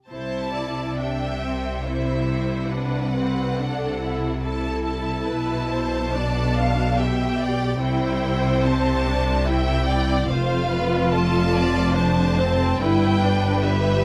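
Tender and serene, this slow romantic movement for string orchestra unfolds at 71 BPM in 3/4 with a rubato feel, centred on C major, and is cut from a longer piece. The violin section carries the melody high in its range with a soft attack, expressive vibrato and a smooth top. Beneath it, a second violin line sounds focused and lush. The viola section fills in the accompaniment with a rich, even tone that sits slightly distant, while the cellos and double basses share the bass, the cellos rich and close, the basses bright, intense and up front. All five sections play bowed throughout, from 0.1 to 14.0 seconds, over a gentle progression that moves from C through G/B, back to C, then F and G, captured with close, detailed microphones and little reverb.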